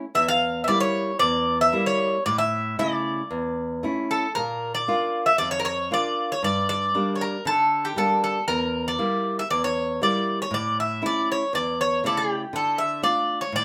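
A bright, metallic bouzouki carries the melody up front from 0.2 seconds, its picked double strings ringing with some octave doubling, in this moody, brooding Greek folk excerpt in straight 4/4. Beneath it, a fingerpicked nylon-string guitar in classical style supplies warm accompaniment, with the odd finger squeak audible, as the harmony moves through diminished, major and minor colours before settling on D minor at 12.5 seconds. The pair sit in a small, moderately reverberant room, and the music gradually speeds up across the whole clip.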